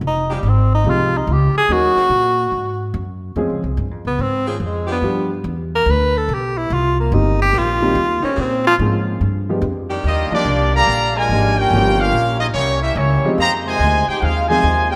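A concert-hall bloom surrounds this swinging, brassy big band excerpt at 144 BPM, where a smooth-topped tenor saxophone solos with vibrato over a thumpy pizzicato upright bass, an intimate upright piano with audible action noise and soft background saxophone chords, until at 10.0 s the music settles into E-flat major as a clear trumpet section takes the melody with light vibrato and a soft-attack trombone section adds a second line.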